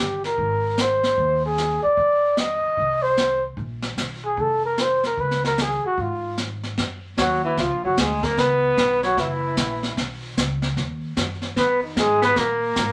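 A swung 4/4 groove at 150 BPM drives this playful small-group swing and bop jazz, where an airy, up-front brush kit with a boomy kick and a woody, thumpy pizzicato upright bass support a dark, breathy trumpet melody with light vibrato, joined at 7.2 s by a warm, vintage tenor saxophone second line, in a moderate studio ambience.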